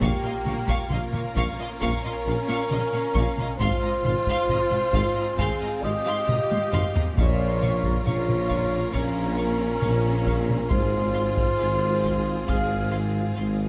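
Recorded with close, detailed microphones in a moderate concert hall reverb, this dramatic, epic orchestral film-score passage, cut from a longer piece, moves at 68 BPM in Bb dorian over Bbm and Fm/Ab chords: a smooth violin section carries the melody above a focused second violin line and an airy, hollow flute, while a lush viola section accompanies, a dark, distant French horn section and a background string section hold sustained chords, an intense cello section, a mellow tuba and a bowed double bass section form the bass, and a taiko ensemble struck with heavy sticks plays a drum fill from 6.3 to 7.2 seconds.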